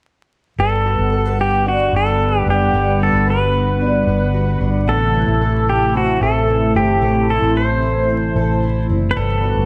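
This blissful, dreamy dream pop excerpt in G major at 112 BPM opens at 0.6 s with a bright, clean pedal steel guitar carrying the melody up front, over shimmering, octave-doubled arpeggios from a fingerpicked twelve-string acoustic guitar bathed in lush chorus and tape echo, with audible finger squeak. A round, punchy muted electric bass anchors the Gmaj7 to Am movement, while a swirling, nasal analog pad sustains detuned chords through phaser and chorus. Near the end, at 9.2 s, a mellow vibraphone with soft mallets slips in barely audibly, and the whole track sits in a moderate spring reverb and small room with vinyl crackle.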